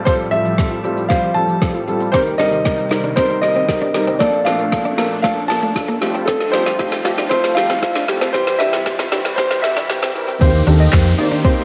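Dance-pop at 116 BPM in F major, this euphoric, carefree clip is cut from a longer piece and spends most of its length building toward a drop at 10.4 s, with chords moving from Fadd9 through Eb6, Bbmaj7, Fadd9 again and C before landing on Eb6. A clear, intimate grand piano with audible action noise carries the melody through analog delay, while a second, warm grand piano supplies pumping, tape-colored accompaniment beneath it. A smooth R&B drum kit sits up front with a soft kick, woody snare, silky hats, handclaps, shaker and crash, and a drum fill and filter sweep run through the build. In the background, a detuned sawtooth supersaw swells with sustained chords, a lush unison pluck spins arpeggios, a clean, compressed direct-recorded electric guitar enters at 2.1 s with a chorused riff, and very quiet risers and downlifters add motion. At the drop, a round, punchy hollow-body fingered bass jumps to the front and a faint wave-folded pluck takes a brief melody over the Eb6 chord. 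The whole mix has the hazy character of a home cassette recording with light reverb and digital ambience.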